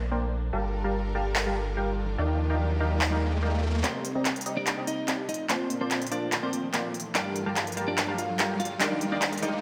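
Bathed in light reverb and digital ambience, this playful, euphoric future bass clip moves at 145 BPM in a half-time 4/4 feel, tuned to A4 = 444 Hz, as a smooth symphonic string section with light vibrato holds sustained chords over Bbmaj7, Gm9, Ebmaj7 and Cm9. A deep, tube-saturated sine sub bass and a punchy, detuned supersaw stab riff with low-pass filtering and dub echo sit up front, while an electronic riser hovers in the background and a crisp, overdriven big-room dance kit of handclaps and hi-hat arrives at 1.4 seconds. At 3.8 seconds the sub bass drops away and a clean, compressed electric guitar takes the picked melody through tape echo, as a drum fill, a build-up and a filter sweep on the supersaw carry the passage forward.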